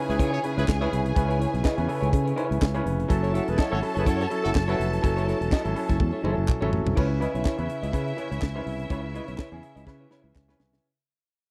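Lush, distant bowed strings and an intimate baby grand piano with audible action noise open this driving, danceable disco excerpt, joined at once by a growly, up-front fingered bass, a tight funk kit with bright cymbals and a high-tuned snare, a dark, clean semi-hollow guitar in the background, and warm, punchy horn stabs that stop at 4.9 seconds. Crisp group handclaps enter at 0.7 seconds, and the harmony moves from C#m7 to F#m7 before returning to C#m7 at 7.0 seconds, where the dry, close 1970s-style sound begins to fade out after a drum fill.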